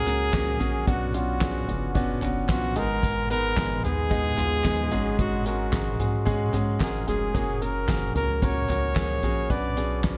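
Anthemic and uplifting, this piano-driven pop excerpt moves at 111 BPM in a straight 4/4 feel in F# major. A mellow, close-miked trumpet carries the melody up front, its pop-style solo line colored by light vibrato and a punchy edge. Beneath it, a clear grand piano sits intimately in the mix, its natural tone carrying audible action noise, while a round analog bass anchors the low end with a deep, dark, detuned sound and a moving notch. A soft-mallet drum kit with a boomy kick, fat snare, toms, hi-hat and handclaps fills a big-room acoustic space, joined by a very quiet group handclap with a hollow, human character. The harmony moves from F#add9 through Bmadd9, G#m and C#sus4/G#, returning to F#add9 and Bmadd9 under a touch of light reverb.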